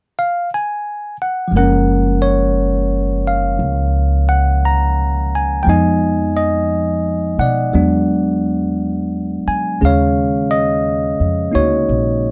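A lazy swung 4/4 lilt carries this late-night, romantic jazz ballad excerpt, where a bright, bell-like tine electric piano sits up front from 0.2 seconds, a woody, growly pizzicato upright bass joins at 1.5 seconds as the harmony moves from F#maj9 through Fm7b5 and E9 to D#m11, all captured in a dry, close 1970s-style studio sound with light reverb.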